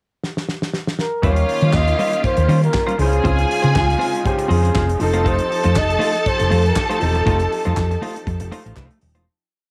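Disco with a glamorous, sultry mood: a damped 70s drum kit opens with a fill before settling into a four-on-the-floor beat with open hats on the off-beats and a fat snare layered with clap, while a round, hollow-body fingered bass sits up front with a syncopated line and chromatic approach notes. A breathy, whispered flugelhorn carries a motif-based melody of call phrases with scooped notes, over a string section playing fast runs into held notes, choppy sixteenth-note guitar, spread piano chords with grace notes and a distant string pad in the background. Quiet group handclaps join on the backbeat at 5.8 seconds, and the piece fades out from 7.3 seconds, with the sound of a home cassette recording in light reverb.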